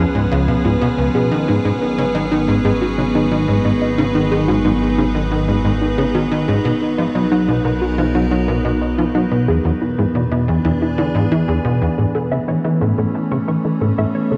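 A punchy, funky analog bass sits up front with a plucky sawtooth riff and tape echo, taking on a filter sweep from 12.0 seconds, while a bright, morphing wavetable pad holds sustained chords beside it in this expansive, cosmic piece of sequencer-driven space music. A warbly, dusty lo-fi pluck spins arpeggios in the background through chorus and tape echo, and a detuned analog drone with phaser hums beneath until 11.9 seconds. The harmony moves from C#7 through G#m7, Bmaj7 and E7 before settling on A, all bathed in a wet plate reverb within a dark, warm mix.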